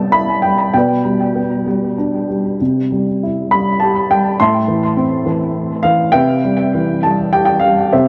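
In a lilting 3/4 with a free, rubato feel, this short classical passage drifts at around 95-105 BPM, its pulse stretching and relaxing like a gentle waltz. A single upright piano carries the whole excerpt from 0.0 to 8.1 seconds, spanning A2 to C6 in a lyrical solo voice that feels hopeful and at ease. Its tone is dark and woody, with a mellow body that sits up front in the sound. Tape echo trails each phrase, and together with light reverb and a small room ambience it gives the mix a soft, echo-heavy haze. The harmony moves through Cmaj7, G/B, C and Am before returning to Cmaj7 at 6.1 seconds, keeping the passage settled in C major.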